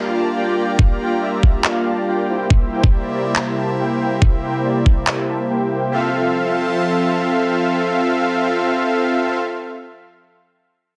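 A smooth, detuned supersaw carries the riff in this playful, bright future bass excerpt, sitting up front with a soft attack, cassette-tape coloring, delay and a filter sweep that runs through the opening stretch, all pumping against the sidechain. Beneath it, a breathy, airy pad holds sustained chords with a slow attack, long release and chorus, its noise layer adding a hazy shimmer as it also breathes with the sidechain. A knocking electronic kick enters at 0.8 seconds, joined by electronic finger snaps and handclaps with a lightly clipped, tape-tinged snare, and both drum parts sit close in the mix before dropping away around 5 seconds. The track moves at 140 BPM in 4/4 with a half-time feel and a gentle swing on the sixteenths, in F major, with the harmony shifting from Gm7 to C7 and resolving to Fmaj7 at 5.9 seconds. Light digital reverb surrounds a dense, heavily limited modern master.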